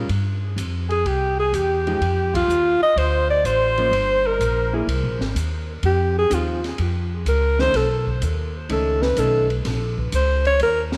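An up-front alto saxophone with vibrato carries the melody through this swinging, smoky small-group jazz excerpt at 126 BPM, its tone touched by tape echo, and it takes a solo from 5.8 s. Until 4.7 s, a breathy second alto with subtone and scooped notes plays a second line in the background, while a woody pizzicato upright bass sits up front beneath clean, fingered chords on hollow-body electric guitar. An open drum kit with dark cymbals, a high-tuned snare and a boomy kick swings in a small room with echo-chamber reverb, and the band hits an accent at 2.2 s.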